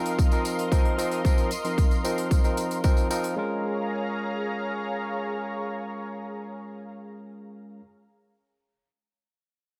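A punchy, overdriven electronic kick drives this cosmic, groovy nu-disco excerpt from 0.2 s until 2.9 s, alongside an airy hi-hat in the background and a close, dry tambourine that both enter just before it at 0.1 s and stop at 3.3 s. Up front, a bright, barky tine electric piano accompanies through a low-pass filter and digital delay with sidechain pumping, while a lush, warbling unison pad with chorus holds sustained chords. The harmony moves from F7sus4 to Bbm7 at 3.4 s, inside a light reverb.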